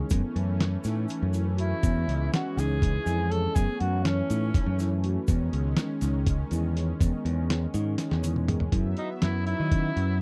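A dry, close 1970s-style studio sound frames this driving, brooding progressive instrumental, cut from a longer piece and set in 7/8 with a straight feel. Gritty, overdriven sampler-style drums with a thumpy kick and fat snare sit up front beside a growly, punchy picked electric bass, while a grainy tube shaker stays in the background. A detuned sawtooth analog pad with chorus and tremolo holds sustained chords moving between F#m and E, and a woody marimba plays arpeggios further back. At 1.6 seconds a vintage-toned tenor saxophone with vibrato carries the melody, joined by a breathy, whispered flugelhorn on a second line until 5.0 seconds. After a drum fill, the saxophone returns for a solo at 9.0 seconds over an F#5 chord.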